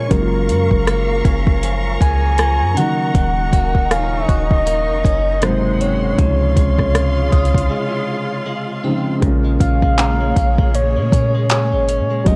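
Smooth and romantic, this contemporary R&B excerpt moves at 79 BPM in 4/4 with a swung sixteenth-note feel, set over Gbmaj7, Ebm7, Ab7, Dbmaj7 and Bbm7 chords in a dark, dry mix. A round, sub-octave synth lead with chorus and vibrato carries the melody over a felt-muted upright piano with audible action noise, lush bowed strings, twangy direct-recorded electric guitar arpeggios with subtle chorus in the background, and a deep, boomy 808-style bass, while an electronic drum kit with a soft kick, metallic hats, handclaps and rim clicks sits up front. A delicate, bell-like celesta with delay enters at 1.6 s, a break arrives at 7.7 s, and the music moves into a new section at 9.2 s.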